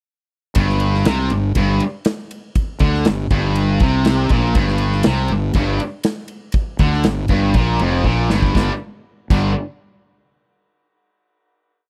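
This is a short, complete blues rock power trio piece with a strong southern rock flavor, running at 120 BPM in a straight 4/4 with a raunchy, swaggering attitude. A tight, distorted electric guitar plays a picked single-note riff built on a G5 chord. The guitar is double-tracked and sits up front. A fuzz-soaked, overdriven fingered electric bass doubles that riff with a syncopated line, and the big acoustic rock kit drives a heavy groove with a punchy kick, a medium-tuned snare, and sparkling crash and ride cymbals. The riff carries the piece until a drum fill at 8.0 seconds leads into a final chord at 8.5 seconds. The sound is dry and close, like a 1970s studio recording with all three players pushed up front.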